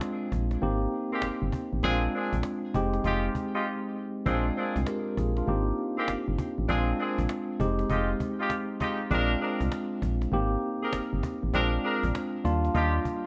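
New jack swing R&B at 99 BPM with a confident, bouncy swung feel, built on up-front tine electric piano chords moving through Bb9, Abmaj9 and Fm9, a punchy, round FM bass entering at 0.3 seconds, snappy cajon carrying vintage 12-bit sampler grit, and tight, dark jazz-style horn stabs with light vibrato and digital delay arriving at 1.1 seconds, all set in a bright 1980s-style digital production with moderate plate reverb, a brief break at 3.7 seconds, and an Ebmaj9 close to this excerpt from a longer piece.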